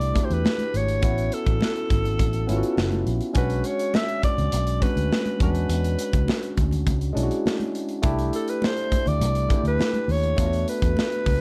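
A straight 4/4 groove at 103 BPM sets up this short cut from a lush 1970s-style soul piece, cinematic and bittersweet in mood. Up front, a raspy alto saxophone carries the melody between A4 and E5, gritty and punchy with vibrato and a smooth top in a pop-style solo voice. A barky tine electric piano plays the accompaniment through a combo amp, lightly overdriven and coloured by a phaser, over a vintage fingered electric bass that sounds dark, round and foam-muted. A modern acoustic drum kit with a punchy kick, a medium-tuned snare and hi-hat sits up front in a pumping small room, while very quiet, high-tuned congas with a thick, damped skin join at 0.2 seconds. The harmony moves through lush sixth-ninth and extended chords, from a rootless C69 through A69, Bm69 and E13, settling on E7sus4 at 10.4 seconds, all held in a small room ambience.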